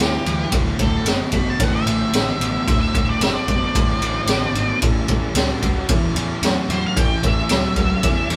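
A straight 4/4 groove drives this raunchy, swaggering slice of blues rock and southern rock, played by a band live in one room with moderate reverb and cut from a longer piece. Up front, a raw garage kit lays down a boomy kick, a high-tuned snare and ride cymbal, gritty and saturated with a rolled-off top, while a double-tracked, compressed overdriven guitar plays a low riff and a fuzzy picked bass sits in the background. Over G7, D7 and A7 changes, a dark octave-fuzz lead guitar solos for the full 8.4 seconds, as a very quiet, thick tonewheel organ holds percussive sustained chords with key click, vibrato and a slow rotary speaker.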